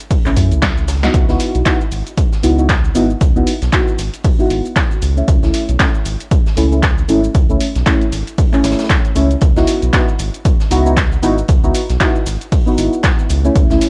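A deep, mellow chord stab sits up front in this smooth deep house excerpt, its soft, detuned tone shaped by a filter pluck and a moving notch, with chorus, phaser and tape echo colouring its decaying chords between A3 and F#4. Moving at 116 BPM in 4/4 with a 58% swing on the sixteenths, the piece stays in C# minor, cycling from C#m11 to A at 5.3 seconds and back to C#m11 at 9.4 seconds. A punchy electronic kick drives the groove from the front, joined by an analog drum machine whose handclaps, hi-hat, shaker and snare carry a short room sound, and a very quiet acoustic arena kit adds natural hi-hat and a medium-tuned snare from a big room. Underneath, a round, dark analog bass built from sawtooth and sine tones holds sustained notes between G#1 and F#2 with a sidechain pumping motion. After a brief drum fill from 0.6 to 1.1 seconds, the track drops into its main section, and the whole recording carries a cassette-tape character.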